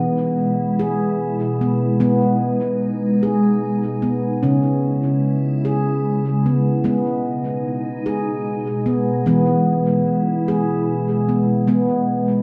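A ringing stainless-steel handpan, struck with the fingertips and trailed by a diffuse ambient delay, plays airy, up-front arpeggios over a glassy, full-bodied FM pad whose slow-attack chords shimmer with ensemble chorus and phaser, moving through E, G# minor and C# minor in G# minor at a hypnotic 50 BPM in 6/8, all set in a wet concert hall reverb for a meditative world piece cut from a longer work.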